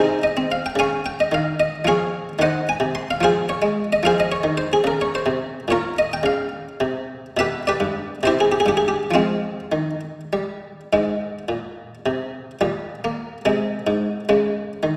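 Classical baroque-style suite movement for solo harpsichord, cut from a longer piece, moving in a solemn, flowing 6/8 at 72 beats per minute on the dotted quarter with a free, rubato feel. The buff-stop harpsichord is the only voice, spanning G2 to C6 with a muted, lute-like pluck, an airy Italian-style character and a dry, up-front presence. Around it, a recital hall's wet reverb, with a 1.7-second decay, lends the sound the spaciousness of a church or concert hall. The opening hovers around Ab/C, Db and a Cdim before settling into F minor at 4.0 seconds, passing through Bbmadd9, G/B and C on its way back to Fm. At 10.9 seconds the opening material returns, now in Ab major, drifting through Gm/Bb and Ab/C before coming to rest on an open Db5.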